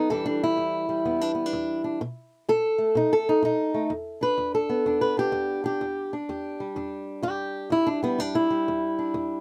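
Acoustic country blues in a brooding, soulful mood, this short passage cut from a longer piece features a lone fingerpicked guitar in 4/4 with a lilting swing on the eighth notes. The old ladder-braced acoustic guitar sits up front, its tone dark, woody and boxy, with the character of old strings. Its range runs from E2 to B4, and the harmony moves from Em7 to B7 before returning to Em7 at 3.9 seconds, where the opening section repeats. Close, detailed microphones capture the instrument intimately, with only light reverb around it.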